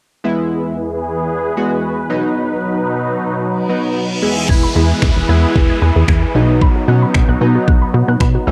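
A straight 4/4 pulse at 113 BPM drives this upbeat, euphoric dance-pop excerpt in E major, with the harmony swinging between E and B. It opens on glossy, chorused retro synth keys and a filtered supersaw swell built from detuned unison sawtooths with a sub octave, both breathing with sidechain pumping and carrying a cassette-tape color. A reverse cymbal and downlifter rise in at 3.7 seconds to set up the second half. At 4.5 seconds the groove arrives: a punchy, funky analog bass with a filter pluck and tube saturation sits up front beside a layered electronic pop kit of knocking kick, finger snaps and crash. Tucked in the background, a soft, round, dark pluck spins arpeggios high above, treated with chorus and analog delay. The whole thing sounds dry and intimate, like a home recording on cassette, and it breaks off as part of a longer piece.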